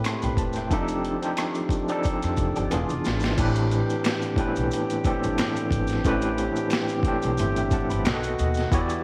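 R&B and neo-soul at 90 BPM with a lightly swung, sultry feel, this short cut opens on an overdriven tine electric piano, barky and bright with a fast tremolo through a combo amp, up front over a dark, distant brass ensemble holding chords and vintage finger snaps and maracas tucked in the background, moving through Am9, F13 and E7b9 before settling into A dorian at 3.4 s. A compressed, pitched-down boom bap drum kit with a thumpy kick, high-tuned snare and large-room grit joins alongside a woody pizzicato upright bass, while a slightly broken-up electric guitar through a small old amp adds a brief wah and phaser line from 1.9 to 2.9 s. A drum fill leads into the second section, the electric piano takes a fill near the end as the harmony turns to B7, and light reverb, studio ambience and vinyl crackle give the whole a soulful, dusty patina.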